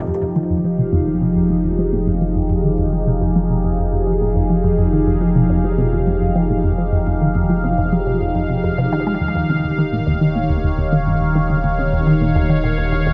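Expansive and hypnotic, this ambient piece moves at 105 BPM in a straight 4/4, set in F minor and cut from a longer work. A phased analog pad carries sustained chords throughout, its detuned sawtooth tone swirling and evolving with a slow attack and long release, colored by phaser and chorus and placed up front. A resonant blip pluck plays a low riff from Eb2 to Ab3, juicy and squelchy with a pulse-and-sawtooth edge, a moving notch, a fast attack and short decay, treated with phaser and tape echo. Beneath them, a round sine sub bass holds deep between Eb1 and F1 at a lower level. The harmony rests on Fm7 before shifting to Eb7 at 9.2 seconds, all bathed in a moderate plate reverb with a 3.0-second tail.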